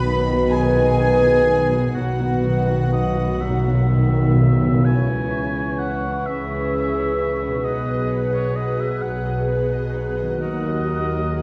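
Moving in a rubato 6/8 at 43 dotted-quarter beats per minute, this cinematic, emotional film score passage carries a longing, sorrowful mood. A rich studio violin section sings the melody close and intimate, with light vibrato, a gentle attack and sul tasto bowing. A clear solo oboe, a mellow flute ensemble in the background, a hushed second violin section that sounds pure and floating, and a faint vintage clarinet carry second lines alongside it. Beneath them a chamber viola section supplies accompaniment, a distant, roomy French horn section holds sustained chords, and a barely audible concert harp rings out fingerpicked arpeggios, while cello and double bass sections anchor the bass. Round timpani, played with soft mallets on calf heads, add a fill until 4.8 s, when the harmony turns to C# dorian, and the dark, warm production sits in a wet recital hall reverb.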